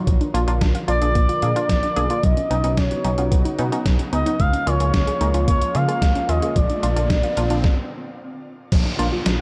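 Lightly reverberant and up-front in its drums, this short synth-pop excerpt, cut from a longer piece, feels melancholic yet driving in a straight 4/4. The trip hop sampler-style drum kit, compressed, pitched down and muffled, sits forward with a thumpy kick, a medium-tuned snare, hi-hat and crash cymbal, all bathed in gated reverb, while a smooth gliding synth bass with sawtooth and triangle tones, vibrato and portamento carries the low end. A lush, punchy, detuned unison pluck adds wave-folded accompaniment under shimmer reverb, and in the background a soft round pluck spins arpeggios through chorus and digital delay, alongside an evolving, airy resonant pad holding sustained chords. From 0.9 s an expressive synth lead, dark and sawtooth-edged with a soft attack, chorus and vibrato, sings the melody high above the chords of Bb, Badd9 and Db6. An electronic riser and downlifter creeps in at 6.5 s beneath the mix, and a stop arrives at 7.6 s, holding until 8.7 s.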